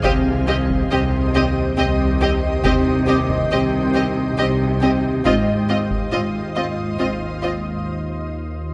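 A woody, dark cello section carries the bass with its vibrato bowing, doubled an octave below by a soft-attacked double bass section, setting an ominous, uneasy tone for this suspense film cue in three-time. Above them, a rich, floating studio violin section holds the melody at a distance. A close, intimate chamber violin section sits in the background with a second line, and a very quiet viola section fills in the accompaniment, all of the strings playing sul tasto. A shimmering, ethereal ambient pad with detuned, granular sustained chords and an evolving sawtooth analog drone underneath both spread a chorused haze. A taiko ensemble struck with hard sticks adds close, acoustic weight until 6.7 seconds, while a slightly out-of-tune, bell-like vintage celesta glints delicately in the background. The harmony moves from C minor to A-flat at 5.3 seconds, and a brief break from 7.9 seconds leaves the drone and celesta ringing in a moderate concert hall reverb, the passage cut from a longer piece.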